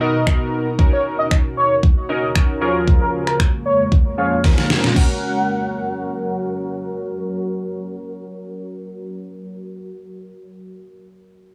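A euphoric, upbeat dance-pop excerpt in straight 4/4, cut from a longer piece, opens with a filter sweep as a barely audible electronic downlifter sinks beneath the mix. A bold, retro octave-doubled lead carries the melody until 6.5 seconds, its sawtooth-and-triangle tone given vibrato, chorus, phaser, digital delay and sidechain pumping. Beneath it, warm, warbling vintage analog keys with a detuned sawtooth tone supply the accompaniment, while an ethereal, evolving pad with a sub octave and ensemble chorus holds sustained chords, both pumping against the beat through to 9.6 seconds. An overdriven, layered pop drum kit sits up front from 0.3 seconds, with a knocking kick, deep snare, finger snaps and crash cymbal, and a drum fill carries the shift to a new section at 5.0 seconds as the harmony settles from Bmaj7, D#m7 and A#m7/E# onto F#. Light reverb rounds out the whole mix.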